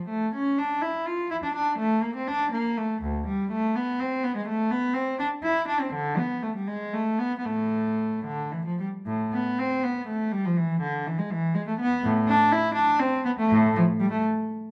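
Grave and flowing, this baroque-style suite movement for unaccompanied cello moves in 6/8 with free, rubato phrasing. A single bowed cello with a nasal, gut-string period tone sits up front in a moderate large-studio reverb, ranging from D2 up to F4. A new section begins at 9.1 s, and the cello stops at 14.2 s in this fragment cut from a longer piece.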